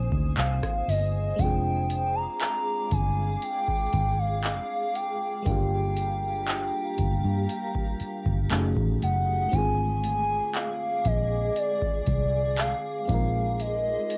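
Longing and late-night in mood, this slow contemporary R&B excerpt moves at 59 BPM in straight 4/4 in F dorian, drifting through chords such as Bb9sus4, Fm69, Gm7 and Gbm69. A booming analog drum machine with a deep kick, metallic hats, handclaps and rim clicks sits up front beside a dark, round, foam-muted fingered electric bass. Meanwhile, a glassy, bell-like FM electric piano with chorus and phaser and a cloudy, evolving granular pad with its own reverb and sidechain pumping fill out the chords, and from 0.4 seconds a mellow gliding portamento lead with vibrato, chorus and tape echo carries the melody, all captured as a dry home recording on cassette.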